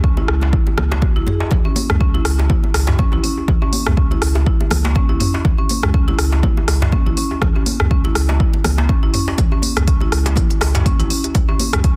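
This afro house groove, cut from a longer piece, has a driving, earthy mood and a lightly swung sixteenth-note feel, all resting on a single C# minor chord. A punchy, layered electronic kick sits up front with an overdriven edge. A deep, round sine sub bass pumps beneath under sidechain compression. Woody rosewood-bar marimba arpeggios, played with medium mallets, float at a lower level with delay and the same pumping motion. From 0.2 seconds, ringing congas struck with hard hands sit close and dry in the background, while a tight, cracking djembe carries a live-room air. An afro-pop drum kit joins at 0.3 seconds with smooth hi-hats, rim clicks, toms and a softly clipped snare, all inside a small room reverb and a dense, heavily limited modern master.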